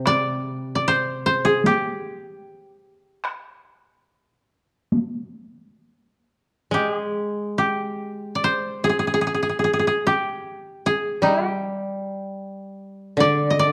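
This calm, austere fragment of Japanese traditional chamber music moves freely in 4/4 at roughly 63-78 BPM. An upfront, mellow koto carries the melody throughout, its woody fingerpicked tone kept dry, while a second, warm koto plays a low accompaniment that briefly sounds at the outset and returns at 6.7 s. A heavy-stick taiko ensemble, compressed and saturated, sounds beneath the opening until 5.1 s, all set in a dark production with a moderate recital-hall reverb.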